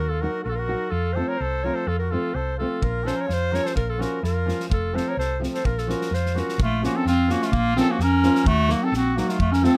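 A straight 2/4 pulse at 128 BPM drives this fiery, bittersweet fragment of Balkan wedding-band folk in Bb harmonic minor, cut from a longer piece. The clarinet carries the melody up front in a warm, classical style, while the trumpet plays a softer second line alongside it. A dark, round hollow-body electric bass sits prominently with an amped tone, and a full-bodied, thumb-plucked nylon-string guitar adds classical accompaniment from 0.2 seconds. The loose acoustic drum kit, with its tight kick and medium-tuned snare in a small, pumping room, joins at 2.8 seconds as the harmony settles onto Bbm. The harmony moves among Ebm, F and Bbm, and a new section arrives at 6.6 seconds, all set in light reverb.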